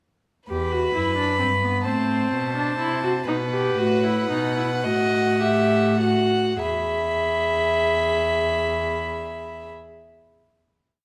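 In a straight 6/8 that slows steadily from 0.5 to 8.5 seconds, this complete, driving and serious baroque-style fugue for string quartet spins four bowed lines of imitative counterpoint, all in a reedy gut-string period tone. The first violin carries the close, airy-bowed melody above the second violin's inner line and the smooth-topped viola accompaniment, while the nasal cello anchors the bass. The exposition moves from E minor through a rootless diminished chord to a dominant harmony before settling on a major final chord at 6.6 seconds, ringing in a moderate recital-hall reverb.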